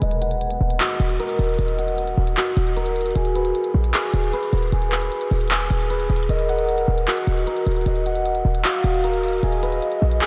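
A half-time trap beat at 153 BPM in Eb minor, tuned to A4 = 441 Hz, drives this menacing, hard-hitting hip hop excerpt, with crisp electronic hi-hats and handclaps, a punchy, tight 808-style sine bass up front, and a ringing, thumb-plucked concert harp melody, also up front, that carries tape echo over Ebm and Abm/Eb chords and passes through a low-pass filter sweep until 6.3 seconds, when a smooth, gliding portamento lead with chorus, vibrato and tape echo enters in the background, the whole mix soaked in huge, dreamy ambient reverb.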